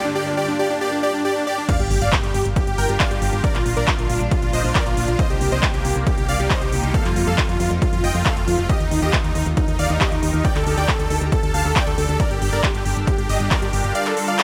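Set in a light digital ambience, this bittersweet, euphoric uplifting trance piece, cut from a longer track, opens with huge, lush supersaw chords carrying the melody with dub echo and sidechain pumping before the drop at 1.7 seconds brings in a very quiet impact, a punchy overdriven kick, a big-room kit of crisp hats, handclaps and crash cymbal re-recorded in a large room, a round, dark FM bass, and a shimmering, ethereal pad with chorus and phaser sitting in the background, with the kick dropping out at 13.9 seconds.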